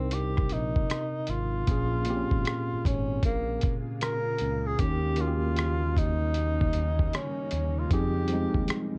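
Melancholic and nostalgic, this swung lo-fi hip hop excerpt puts a breathy, subtoned tenor saxophone melody up front, with light vibrato and scooped notes, over a worn, slightly out-of-tune electric piano that is lightly overdriven and softened by cassette tape, a low-pass filter and plate reverb. A smooth, mellow synth bass and a gritty, compressed sampler-style drum kit with a thumpy kick, hi-hat and rim click sit beneath. At 3.1 seconds a very quiet granular pad drifts in, cloudy and blurred yet bright, its detuned layers evolving under the band.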